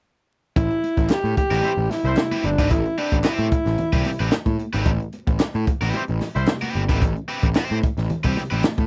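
A dry, close-feeling recording with a layer of vinyl crackle opens this short funk excerpt, cut from a longer piece, in A minor at 111 BPM in a straight 4/4 with a sly, cool mood. A breathy alto saxophone with a smooth top, light vibrato and slapback echo carries a jazz-style melody between D4 and G4 from 0.6 to 4.3 seconds, sitting up front. Beneath it, a round, fuzzed-out picked electric bass drives the low end with overdrive, alongside a compact cocktail drum kit heard at a roomy distance, its high-tuned snare and punchy kick cutting through with hi-hat. Bright, thin-skinned congas played with soft hands and a hollow group handclap stay tucked far in the background. A cranked stack guitar adds bright, overdriven, picked accompaniment from 1.5 seconds, while a tight, vintage horn section with octave doubling punctuates in short pop-style bursts at 1.6 and 5.9 seconds, all over a single Am9 chord.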